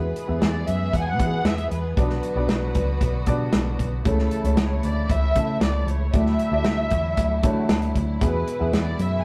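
A short passage of earnest, dramatic piano-driven pop opens at once with a dark, woody violin section carrying the melody in lush bowed vibrato. A warm baby grand piano plays the accompaniment, a clear symphonic string section holds even, smooth sustained chords beneath, and a round, foam-muted picked electric bass sits up front. An acoustic country drum kit joins at 0.2 seconds with a punchy kick, a medium-tuned snare, hi-hat and a rolled-off top, moving at a straight 115 BPM in 4/4. The harmony moves through E, Bm, A/C# and Dadd9 before returning to E, and the piano adds a fill from 7.2 to 8.2 seconds. The sound has a rough rehearsal-room character with a moderate small-room ambience.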